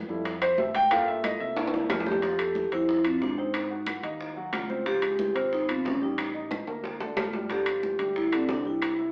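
Afro-Cuban jazz at 182 BPM in F major, danceable and sophisticated, heard as a short cut from a longer piece with an AM radio character and a wet studio reverb around a band playing live in one room. A dark, mellow concert grand piano sits up front and opens with a brief solo passage over Fmaj9, Gm7 and C7, alongside round fingered electric bass, background layers of high-tuned bright congas, low-tuned distant bongos and woody claves, plus ringing metal-shell timbales, with drum fills arriving around 1.6 and 6.5 seconds. From 1.9 seconds a metallic vibraphone with medium hard mallets and the motor off carries the melody up front, riding a harmonic turn through Ab7, Dbmaj7 and Ebmaj7#11/A before settling on G5.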